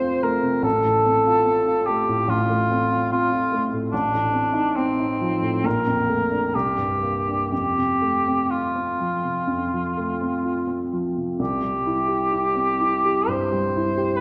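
Romantic classical duo in F major, lyrical and unhurried at a rubato 58-75 BPM in 4/4, where a mellow cor anglais with light vibrato sings the melody in a distant, roomy tone over a clear baby grand piano whose open, long-sustaining chords move from F through Bbmaj7 and Csus2 before shifting toward C at 11.4 seconds, all set in a wet scoring-stage reverb and tuned to A4 = 441 Hz in this brief excerpt from a longer piece.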